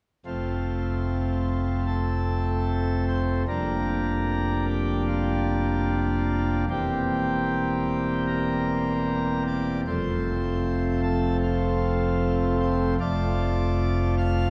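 Moving in a flexible, rubato 4/4 at about 75 BPM, this serene and majestic classical chorale in F major is carried by a solo pipe organ playing from 0.3 to 14.5 s on a full principal chorus with a baroque voicing, set up front and ranging from E1 to F5. Its harmony moves from F through Gm7/F and C7/E back to F before settling on Dm/F. A dark production and a long, wet church reverb with a 2.8-second decay wrap the organ, and the passage is cut from a longer piece.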